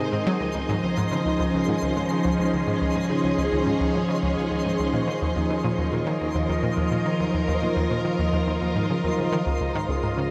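A straight 4/4 pulse drives this expansive, cosmic stretch of sequencer-driven ambient space music, cut from a longer piece, where a round, detuned analog pluck riff with chorus and delay and ringing, thumb-plucked concert harp arpeggios with delay sit alongside up-front, swirling, warbling string-machine chords moving from Dbadd9 to Ebmadd9, while a faint twinkling granular texture sparkles above, a fat analog bass enters very quietly at 9.5 s on a Db chord, and a wet shimmer reverb lends the space its long tail.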